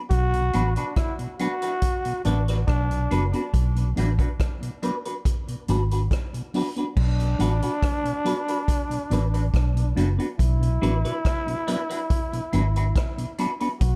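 At 0.1 s a growling, raspy trombone enters in roots reggae at 70 BPM in 4/4, together with a round, foam-muted electric bass and a vintage drum kit playing crash cymbal, hi-hat, kick drum and rim click. The trombone carries a gritty, punchy second line in a narrow range, with vibrato and tape echo. The bass and the drums sit up front, with the kit's punchy kick and dark, rolled-off cymbals captured in a natural studio room. Soon after, a soft, flute-like tonewheel organ adds mellow accompaniment through a slow rotary speaker and tape echo, and a clean, picked semi-hollow guitar joins it with phaser and tape echo. The mood is meditative and serious, resting on B minor in B dorian, with a new section arriving at 7.0 s in this cut from a longer piece. Light reverb and studio ambience give the production a dark, warm feel.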